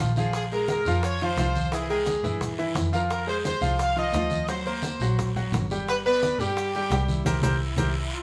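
A short, wet reverb and the feel of a band playing together in one room frame this driving, danceable salsa fragment, where a brilliant, up-front baby grand piano with audible action noise accompanies a clear, punchy horn section carrying the melody, a distant, bowed double bass with intense vibrato holds the low end, a raspy guiro adds texture, and tight high-tuned bongos, thin-skinned congas and grainy maracas sit in the background before the band hits an accent at 7.3 seconds.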